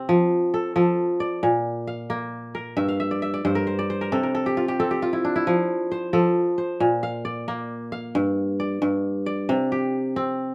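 A ringing, crisp kora, fingerpicked and up front in light reverb, plays alone through this flowing, joyful West African traditional fragment in a straight 12/8, stating its phrase twice and slipping in a fill from 2.8 to 5.5 seconds.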